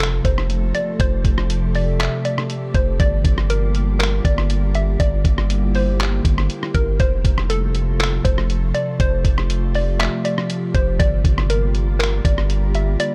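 From the first second a muffled, pitched-down sampler drum kit with a thumpy kick, handclaps, hi-hat and rim click sits up front alongside a deep, decaying sine 808 bass, while a glassy FM pad with ensemble chorus, reverb and sidechain pumping holds ethereal chords and a hollow, detuned square-wave pluck with chorus and digital delay carries a bouncy melody, with a barely audible electronic impact at 0.9 seconds, in this floating, blissful half-time cloud-rap excerpt at 120 BPM in F major moving between F and Gm7.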